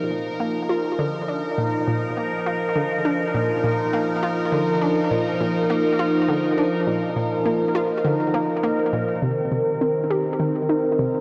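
A straight 4/4 pulse at 102 BPM drives this ambient, sequencer-driven piece of space music, tuned to A4 = 436 Hz, with a cosmic, expansive mood. Up front, a phased analog pad holds sustained chords between Eb3 and Bb4, its detuned sawtooth tone swirling and evolving through phaser and chorus with a soft attack. From 0.1 s an analog pluck plays a riff from Bb2 to G4, its round, bright blend of sawtooth, square wave and a noise layer given a fast attack and short decay, and set in chorus and delay. The harmony rests on Bbsus4 before moving to Cm7 at 9.2 s, where the passage shifts into a new section. A lush hall reverb with a 3.2-second tail bathes the sound, and the worn cassette tape adds a warbly pitch drift. The recording is cut from a longer piece.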